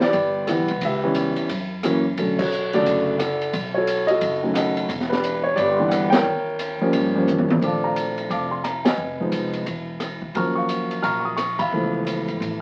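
Swinging and relaxed, this jazz piano trio excerpt moves at 176 BPM in 4/4, with an intimate grand piano carrying the melody up front, its action noise audible, over a woody pizzicato upright bass and an open acoustic drum kit with dark cymbals, a high-tuned snare and a boomy kick. The whole trio hits shared accents at 2.3 and 8.8 seconds, and a drum fill at 7.3 seconds leads into a new section built on a Bbmaj9 chord at 7.6 seconds. The sound has the crackle of a very old 78 rpm record and a short, wet studio reverb.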